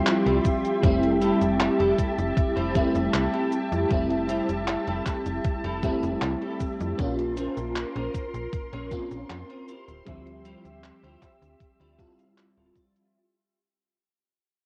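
A lush FM electric piano with a soft pad layer sits up front in this woozy, dreamy vaporwave fragment, its chorused, tape-worn chords trailing analog delay over a Dm11, Fmaj9 and Bbmadd9 progression in a straight 4/4. Alongside it, a silky string machine, also up front, holds mellow, warbling sustained chords, while a snappy slap-like FM bass gives each note a metallic bite. The beat pairs a thumpy, overdriven electronic kick, placed up front, with a detuned 8-bit drum machine supplying cabasa, handclaps and hi-hat, both re-recorded in a small room. A clean, picked electric guitar plays a chorused riff roughened by 12-bit sampler grit and echoed by analog delay, then adds a fill from 11.6 seconds. Spring reverb and digital ambience wrap this cassette home recording, cut from a longer piece, and a fade runs from 0.8 seconds to the close.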